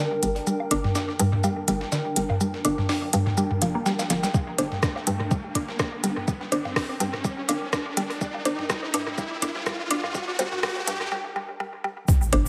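In an echo-heavy, chamber-reverbed mix, this quirky, clinical minimal techno fragment builds under a filter sweep as a woody, round FM mallet pluck riff with chorus and dub echo pumps over a hollow, bouncy knocking FM bass and a cloudy, blurred granular pad, while a gritty, tape-warm breakbeat-style kit of hats, shaker and snare, an overdriven click kit of clicky hats and rim clicks, and dry analog woodblock, toms and bongos tick along, a soft, up-front electronic kick arrives at 4.3 s, and a rising effect gives way to a break at 11.1 s before an impact and a grainy, close egg shaker land at 12.1 s.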